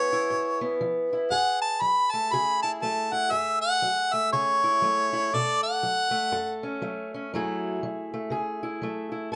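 An up-front, warm harmonica carries the melody with vibrato, scooped notes and a jazz-tinged solo bathed in plate reverb, over a dark, boxy, fingerpicked parlour steel-string acoustic guitar in this mournful, brooding acoustic country blues fragment in F# minor, which swings at 120 BPM in a snug booth ambience and moves from C#7#9 to F#m9 at 1.3 seconds and through Bsus2 before returning to F#m9.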